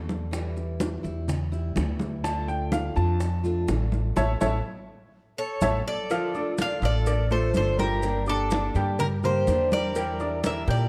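A straight four-four Cuban son and guajira groove opens with hard-handed, bright congas, round low-tuned bongos and cowbell, and grainy maracas set in the background, creating a nostalgic, sultry mood. A woody, thumpy pizzicato upright bass sits up front beneath a boxy old ladder-braced acoustic guitar, whose picked accompaniment carries a touch of finger squeak. A worn, brilliant grand piano enters with short-sustained arpeggios at 2.2 seconds, and the band hits an accent at 4.2 seconds. At 5.4 seconds a drum fill ushers in a metallic, double-strung Cuban tres playing the melody up front, joined by a breathy metal jazz flute with vibrato and a crisp, chiffy attack on a second line. The harmony moves from a suspended D chord through D minor, A major and G minor into a darker half-diminished colour, all in a dark, moderately reverberant large studio sound.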